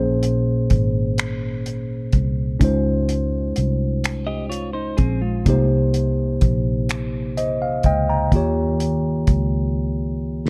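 A worn, slightly out-of-tune tine electric piano sits up front in this slow six-eight R&B excerpt, its clean, direct tone setting a yearning, late-night mood in Bb dorian at 42 BPM, tuned to A4 = 445 Hz. The harmony moves through Bbm7, Dbmaj9, Cm7 and Eb9, with a vintage muted fingered electric bass underneath that sounds amped, foam-muted, round and punchy in a low register. A cloth-damped, thuddy drum kit enters at 0.2 seconds with finger snaps, hi-hat and a tight kick, its dry, smooth tone rolled off at the top and placed close to the listener. A compressed, fingered clean electric guitar with vibrato adds a brief second line between 4.3 and 5.7 seconds, sitting low in the mix. Small room ambience and a dark, warm production give the passage, cut from a longer piece, an intimate feel.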